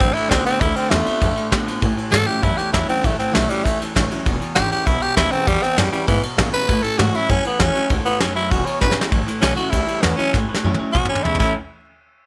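This short, upbeat rockabilly cut opens with a full band: a raspy, growling tenor saxophone with vibrato carries the melody up front, over a twangy, slightly broken-up electric guitar riff, a woody, thumpy pizzicato upright bass, a full-bodied picked acoustic guitar in the background, and a brushed drum kit with a tight kick. The retro sound sits in a light reverb; a drum fill at 8.8 seconds leads into a brief second section, and another fill runs from 10.3 seconds to the end.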